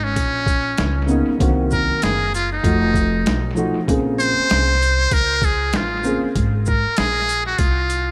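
An echo-heavy mix in a small room gives this short jazz-hop cut a warm, cool atmosphere. A muted trumpet leads up front, its metal-muted tone thin and buzzy with a breathy grain, light vibrato and a smooth top as it carries the melody in jazz style, trailed by dub echo. A pizzicato upright bass with steel strings sounds woody and warm from the opening moment. The boom bap sampler-style kit enters at 0.2 seconds, compressed, pitched down and overdriven, pairing a thumpy kick with a high-tuned snare, hi-hat and shaker, all carrying a gritty swing and their own dub echo. A dark upright piano adds mellow, worn and slightly detuned chords from 1.1 to 6.3 seconds, its vintage tone smooth under echo. The harmony moves through Cbmaj9, Cm7b5, F7b9 and Bbm9 before settling on Ab69, and the piece is cut from a longer work.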